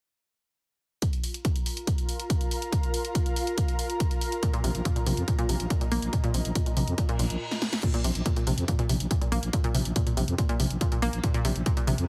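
This excerpt of driving peak-time techno opens at 1.0 seconds with a heavy, layered electronic kick sitting up front, joined by a punchy, overdriven analog drum machine playing crash, hi-hat and snare, with the crash and hi-hat pumping against the kick. An ethereal, airy pad with slow attack and long release floats above, thickened by ensemble chorus and its own reverb and breathing with sidechain pumping. A detuned analog pluck riff enters at 4.4 seconds, bright and round with chorus and tape echo, followed closely by a growling, thick FM bass that also pumps to the kick. A reverse cymbal from 7.1 seconds, a brief stop at 7.4 seconds and a drum fill mark the turn into the next section, where kick, drum machine, pluck and bass carry on relentlessly after the pad has dropped away. The mix has a heavily compressed, radio-like sound with light reverb, keeping the mood intense throughout.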